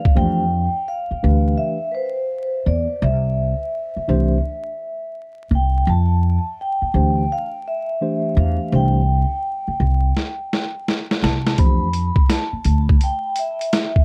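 Jazz-hop with a mellow, smoky mood, moving at 84 BPM in 4/4 with a swung sixteenth-note feel, cut from a longer piece. A vibraphone played with soft mallets carries the melody up front, its metallic, ringing tone carrying a medium motor vibrato, airy plate reverb and tape echo. A mellow tine electric piano supplies clean accompaniment through its built-in speakers, while a woody, thumpy pizzicato upright bass with steel strings sits prominently underneath as the harmony alternates between Fmaj9 and C. The boom bap sampler-style kit, compressed, pitched down and carrying vintage 12-bit grit with a thumpy kick and medium-tuned snare, sounds only briefly at the start and then returns at 10.2 seconds with a drum fill that runs to 11.6 seconds. The production is dark and warm, with light reverb and a bed of vinyl crackle.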